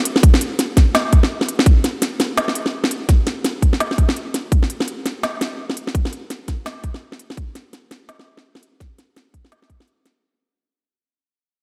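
This is a drum and bass groove at 168 BPM in 4/4 with a half-time feel and a 59% swing on the sixteenths. The mood is tense and dark, and the piece is cut from a longer work. An electronic kit with a woody snare and crisp hi-hats runs from 0.1 to 10.1 seconds, while a hard-clipped electronic kick plays from 0.2 to 9.8 seconds. Both drum parts sit up front, overdriven and sent through studio reverb. The whole mix is bathed in a lush hall reverb that gives it a dreamy, soaked atmosphere, and the passage fades out across its full length.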